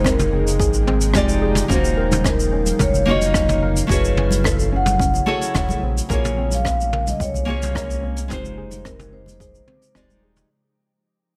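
Sunset chillout at 109 BPM in a smooth, wistful mood, this short excerpt drifts through minor ninth chords as a mellow, ringing vibraphone with soft mallets carries the melody through tape echo over fingerpicked nylon-string guitar touched with digital delay. A round, deep analog bass with tube saturation anchors a bed of dark, brushed jazz kit with hi-hat, rim click, shaker and toms, an overdriven electronic kick in the background, and congas entering at 2.1 seconds. Behind them an ethereal, shimmering pad holds sustained chords and a soft round pluck plays chorused arpeggios, all in light reverb, before a fade-out begins at 4.6 seconds.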